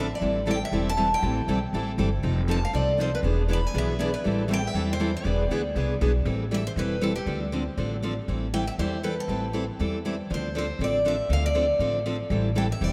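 Bittersweet and fiery, this short cut from a longer jazz manouche piece moves with a light swing at 238 BPM in A minor, with a boxy, parlour-sized picked steel-string guitar carrying the melody high up, finger squeak and all, over a second bright picked guitar holding down the accompaniment. A third fresh-stringed guitar sits in the background, dropping out at 6.1 seconds and returning at 12.3, while a woody, thumpy pizzicato upright bass on gut strings stays up front throughout. The whole group rings out in a vast, echoing cathedral-like space, moving through minor seventh and dominant chords such as Am7, F7, E7 and Dm7 across two matching sections.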